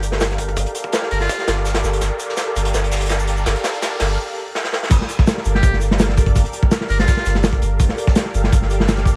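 A soft, silky string machine holds a sustained Gm9 chord with a mellow ensemble chorus and vintage sampler grit, over a deep, round dub sub bass and a crunchy, saturated breakbeat kit that sits up front with dark cymbals, a tight kick and a rolled-off top. This raw, dark drum and bass and jungle excerpt in G minor moves at 166 BPM, with a second, quieter breakbeat kit of hi-hat, shaker and snare sitting in the background with a mid-forward character. An electronic riser sits in the background from 0.5 seconds during the build-up, while drum fills push toward a short break that leads into the drop at 4.9 seconds. A buzzy, thin trumpet with a metal mute plays brief jazz-style solo phrases with light vibrato and scooped notes, its close-miked tone trailing dub echo. Vinyl crackle and small room ambience give the whole excerpt a gritty, aged surface.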